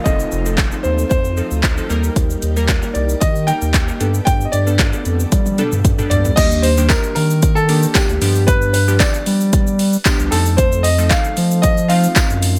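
A baby grand piano opens this driving, energetic dance-pop excerpt, carrying the melody with a natural tone over mellow, organ-like ensemble strings and a very quiet electronic downlifter. Almost at once a deep house drum kit arrives up front, its deep kick, metallic hats, handclaps, shaker, toms and crash cymbal overdriven and re-recorded in a large room. Alongside it comes a thick, saturated sine sub bass that pumps with the sidechain. Glassy digital keys fill in the accompaniment with decaying, chorused notes and a filter sweep, also pumping, while the vintage organ-strings stay in the background until they stop at 6.3 seconds. After a drum fill, a jingly, distant tambourine joins from 6.9 seconds. Across the excerpt the harmony moves through F7, Eb, Gadd9, Ebmaj7, G7 and back to F7, with the mix set in a digital ambience.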